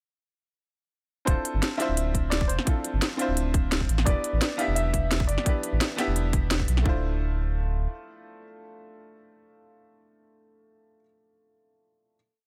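This liquid drum and bass piece at 172 BPM opens at 1.3 s with a full drop, where an up-front electronic kick with a tight two-step pattern and a drum kit with a cracking snare and crisp hats join a deep, sustained sub bass carrying a dub-style line. Over this, a warm grand piano plays a short, motif-based melody in call phrases, with delay adding echoes to its brief notes. A bright, brilliant baby grand piano supports it with held rootless chords and syncopated pushes, also treated with delay. The harmony in D dorian moves from Dm9 to Em7 and back to Dm9, and the mood is melancholic yet rolling, with a tape-like warmth on the drums. At 6.9 s the drop gives way to a final chord. The sub bass lingers until 7.9 s, after which the baby grand rings on alone until 12.2 s in a small, intimate room.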